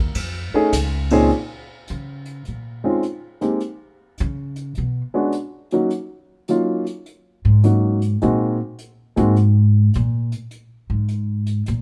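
An upright bass on gut strings stands out, plucked and up front, carrying a solo from 1.3 seconds to the end of this moody, swinging jazz piano trio fragment with a woody, thumpy tone. A dark grand piano opens with a brief solo, its mellow, natural sound and short sustain close to the ear, and it keeps playing the melody until 9.3 seconds. A vintage brush drum kit sits lower in the balance, with hi-hat, ride cymbal and a punchy kick played with brushes; its cymbals are dusky and its top end rolled off, giving it a small-room character. The harmony moves from Fm7b13 to Bbm, passes through a brief chordless stretch, then continues through Bsus2, Ebm7 and Ab9. The trio sits in a moderate reverb that suggests a large studio.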